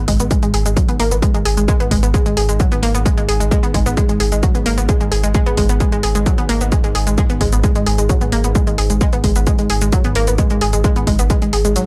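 A straight 4/4 pulse drives this industrial, relentless peak-time techno cut from a longer piece, with a heavy, layered electronic kick sitting loudest in the mix over tape-warmed electronic hi-hat and shaker. A deep, thick sine sub bass anchors the low end, saturated with overdrive, low-pass filtered and pumping with sidechain. Up front, an analog pluck riff with a round, detuned sawtooth tone and a fast, decaying attack carries chorus and tape echo, ranging from F#3 to G#4. Behind it, a mellow, evolving analog drone of detuned sawtooth and pulse-width-modulated pulse wave rises with a slow attack and sustains with chorus and its own sidechain pumping. The whole passage rests on a single chord, and the sound is dry and gritty, like a hardware recording, with the drums re-recorded in a small room.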